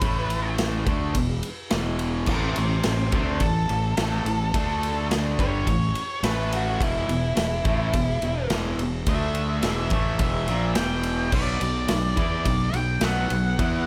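Blues rock in a power-trio vein with southern rock leanings, this raunchy, gritty excerpt moves at 106 BPM in a straight 4/4, with an octave-fuzz lead guitar soloing over power chords on A, E and D before shifting to Em and Bm near 9.6 and 11.3 seconds. A bright, double-tracked cranked stack guitar drives the overdriven riff up front, while a growly, punchy fuzz bass anchors the low end and a big acoustic kit with a punchy kick, medium-tuned snare, ride and crash sits forward in a studio room. The lead's picked, distorted tone carries a plate reverb, and the whole mix is lightly wrapped in ambience.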